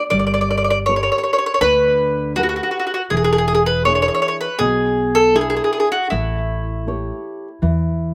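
Romantic and sunny, this short excerpt of an Italian folk serenade moves at 80 BPM in a straight 4/4, with a woody, double-strung mandolin carrying the melody up front over a full-bodied, thumb-plucked nylon-string guitar with audible finger squeak, both touched by slapback echo, while a dark pizzicato upright bass anchors the Gadd9, E7 and A7 chords in a dry outdoor setting.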